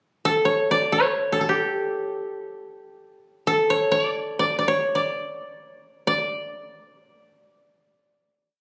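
Captured by phone in a room with light reverb, this brief, complete piece of austere, calm Japanese chamber music features a solo koto, woody and mellow and up front, whose fingerpicked, ornamented modal melody moves freely in rubato, slows from 2.3 to 6.1 seconds, and then settles on a single final note.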